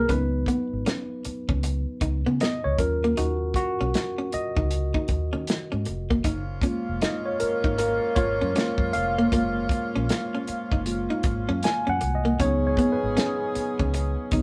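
R&B and neo-soul in a relaxed, warm mood at 78 BPM with a swung sixteenth feel in F# major, this excerpt from a longer piece moves from C#7sus4 through D#m7 to F#maj9. A worn, slightly out-of-tune tine electric piano takes the solo up front over a dry, mid-forward soul drum kit with a tight kick, a dark, round, foam-muted fingered bass, and a clean, picked hollow-body archtop guitar playing a second line. At 6.2 seconds a tight horn section with light vibrato and octave doubling adds smooth stabs, all set in a small room with moderate reverb as if the band were playing live together.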